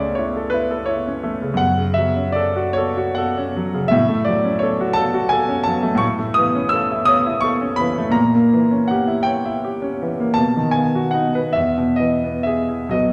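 A clear concert grand piano carries this dreamy, serene romantic nocturne alone, its smooth, vintage tone resting on deep bass across a range from B1 to E6, with a short sustain. The music moves in a slow, rubato 6/8 at around 42-58 BPM, drifting from A/C# through F#m and A to an A#dim7 at 8.2 seconds before settling onto B and then E. A wet large-studio reverb places the listener further back in the room, giving this brief section, cut from a longer piece, a sense of space.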